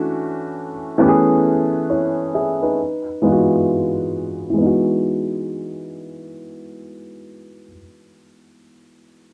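An intimate upright piano sits up front, its woody, natural tone carrying audible action noise as it plays relaxed, warm accompaniment through a low-pass filter, with a filter sweep across the first 4.6 seconds. This slow R&B excerpt moves at 67 BPM in 4/4 with a swung sixteenth-note feel in E major, tuned slightly below standard pitch, and the harmony moves through Dmaj9, Amaj9 and Emaj9. The dry, close sound of a 1970s-style studio carries a light touch of reverb, and the piece shifts into a second section at 4.6 seconds.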